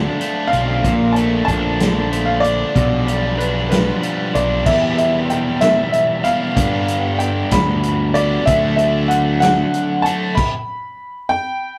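A straight 6/8 sway carries this carefree, wistful indie rock fragment, with a vintage drum kit of dark cymbals, punchy kick and a rolled-off top working under a growly, up-front fuzz bass. A bright, cranked stack guitar and an overdriven semi-hollow guitar, tucked in the background with spring reverb, play the riff beneath a clear, woody, slightly detuned upright piano melody, all caught in a rough rehearsal-room recording with a short, wet booth ambience. After 10.5 s the worn piano plays alone until the cut at 11.8 s.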